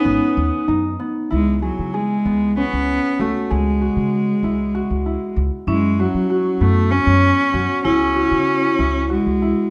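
A clear, biting cello carries the melody throughout this pensive yet urgent chamber piece, bowed by a single player with light vibrato and an earthy edge, placed up front. The contemporary instrumental writing moves in 7/8 at 192 BPM counted in eighths, with a straight feel in C# minor, and the recording is cut from a longer piece. A concert harp rings out fingerpicked arpeggios beneath it the whole way, while a woody pizzicato upright bass with steel strings sits up front on the bass line. A mellow woodwind section holds smooth sustained chords only at the very start, dropping out at 1.3 seconds as the harmony moves from G#m to C#m. A vibraphone played with hard mallets adds a dark, metallic second line with slow motor vibrato, heard briefly at the opening and returning at 5.7 seconds over an F#5 chord before the music settles back on C#m. Light reverb gives the ensemble a touch of space, and the top end is softly rounded.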